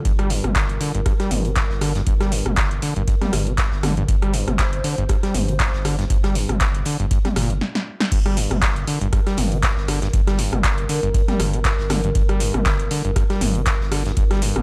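Hypnotic and raw, this dry, gritty acid house excerpt has a squelchy, resonant acid bass riff with tube saturation and tape echo riding a deep sine sub bass and an overdriven analog kick, while an up-front electro drum machine with a punchy snare and metallic hats, a very quiet acoustic arena kit, and a moody, detuned pad pumping in the background lead to a stop and drum fill at 7.6 seconds before the drop lands at 8.1 seconds.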